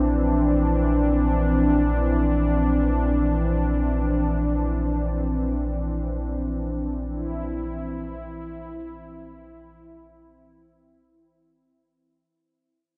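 A smooth, detuned sawtooth pad with a soft attack and chorus sits up front, holding a sustained Cadd9/Bb chord between E3 and E4, while a round, deep, wave-folded analog bass sustains a low Bb1 beneath it from the first moment. This serene, luminous ambient passage moves in free time, tuned to A4 = 439 Hz and cut from a longer piece. Bathed in a huge, wet reverb with a dark, warm production, it fades out from 0.9 seconds to its close at 12.3 seconds.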